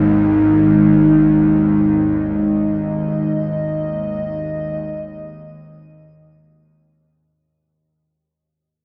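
Ambient music in free time, desolate and unsettling, cut from a longer piece and set in a wet cathedral reverb with a long decay of 5.9 seconds. A dark analog pad holds sustained chords from 0.0 to 7.5 seconds, deep and moody with detuned square and sawtooth tones, a sub octave, ring modulation, chorus and shimmer reverb, its slow attack and long release giving it a brooding weight. Beneath it, a tense, string-like bowed drone sits low and up front with a sawtooth edge, a noise layer and vibrato, sounding until 7.6 seconds as the whole passage fades out from 0.8 seconds.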